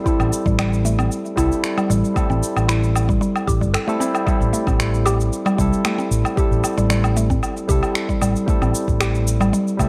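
A straight 4/4 groove at 114 BPM drives this earthy, hypnotic organic downtempo piece in A minor pentatonic. A deep electronic kick, which drops out from 3.7 to 4.3 seconds, and electronic shaker, woodblock and finger snaps carry a tape-warm tone and were re-recorded in a large room, while a dark, round fretless electric bass sits up front. A bright, barky tine electric piano pumps with sidechain and digital delay over an Am7 chord, alongside a woody, percussive FM pluck whose mallet-like arpeggios pass through chorus, phaser and delay, all set in light reverb.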